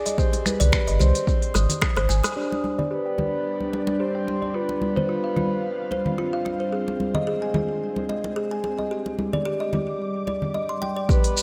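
A woody, plucked kalimba opens this mystical, earthy organic downtempo excerpt at 110 BPM in 4/4 with a light 16th-note swing, its bright, ringing arpeggios sitting up front through a low-pass filter, delay and filter sweeps. A soft, breathy flute-like synth lead carries the melody with chorus, vibrato, delay and a cassette-tape coloring. At the opening, a punchy electronic kick, a smooth kit of finger snaps, hi-hat, rim click and shaker, and a round sub bass drive the groove, closing with a drum fill and a band accent before the drums and bass drop out by 2.4 seconds. Close, dry congas keep ringing through most of the passage. From 2.4 seconds a pure, very quiet quartz singing bowl adds slow beating, and at 3.2 seconds an ethereal, detuned pad rises with ensemble chorus and sidechain pumping over chords moving from C5 through Ab, G and Fsus2 to a rootless Cmadd9, all set in a lush hall reverb.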